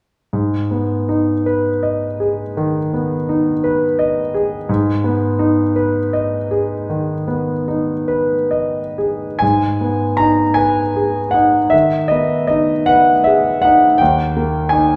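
A warm concert grand piano carries this romantic nocturne alone, its smooth, vintage tone anchored by a deep bass and sitting up front, spanning D#2 to A#5. The mood is yearning and mournful, set in G# minor with the piano tuned to A4 = 436 Hz. The pulse is slow and elastic, moving in 12/8 at roughly 41-58 BPM in dotted quarters with rubato. The playing opens on G# minor, shifts into a new section at 9.4 s, and arrives on D# at 14.0 s before this fragment of a longer piece breaks off at 15.0 s. A wet recital hall reverb with a 1.7-second decay surrounds the instrument, giving the impression of hearing it from further back in the room.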